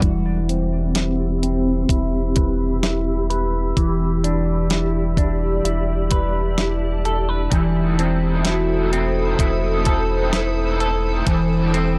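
A slow, haunting and ethereal dream pop excerpt at 64 BPM opens on a thumpy, up-front 12-bit drum machine with a fat snare, a thick saturated sub bass holding E1, dark, clean hollow-body guitar arpeggios through analog chorus and delay, a blurred, evolving granular pad, and a brief hit of biting overdriven guitar that returns with tremolo and chorus at 7.5 seconds, while a mellow soft-mallet vibraphone rings in the background from 8.5 to 10.2 seconds; the whole excerpt moves through Cmaj7/E, Em7, B7b9/E and D7sus4/E, all set against a filter sweep that runs throughout and a dry, gritty booth sound.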